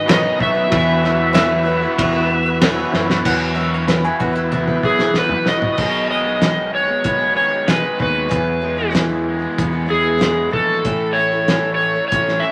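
A steady, straight 4/4 groove at 95 BPM drives this warm, open-road folk-rock and heartland-rock excerpt in E major, anchored by a cloth-damped, thuddy drum kit with a fat snare, dark cymbals and muffled, gritty saturation, fills at 2.9 and 4.5 seconds, and a fingered electric bass underneath. An up-front overdriven slide guitar carries the melody over a shimmering, boxy twelve-string acoustic, a bright, double-tracked garage guitar riff, and a brief reedy electric piano. A slow-rotary tonewheel organ sits in the background until 5.8 seconds, while a bright bowl-back mandolin adds a second line from 1.3 seconds, all wrapped in moderate reverb and vinyl crackle.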